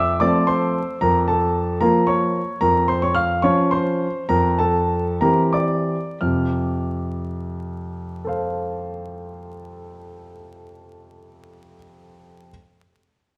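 In 6/8 with elegant, playful rubato that slows from 1.8 to 6.2 seconds, this classical-period piano sonatina fragment, cut from a longer piece, features a clear, natural, up-front solo grand piano ranging from F2 to F6, moving through F, Bbm/F and C7/F before returning home to F at 6.2 seconds, set in a moderate recital hall reverb with a dark production and vinyl crackle.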